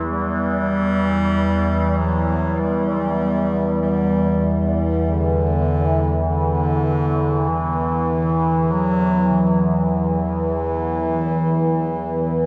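A cavernous, desolate dark ambient drone in E minor at a slow 49 BPM, tuned to A4 = 435 Hz, cut from a longer piece. An up-front drone of resonant sawtooth and sine tones with moving overtones, chorus and phaser sustains throughout, while a mellow, smooth-topped bass clarinet carries a classical-style solo melody with delay from 0.1 seconds. A very quiet, metallic bronze singing bowl, struck with a felt mallet, rings with slow beating in brief arpeggios at the opening and again from 9.3 seconds, all set in a huge, wet reverb.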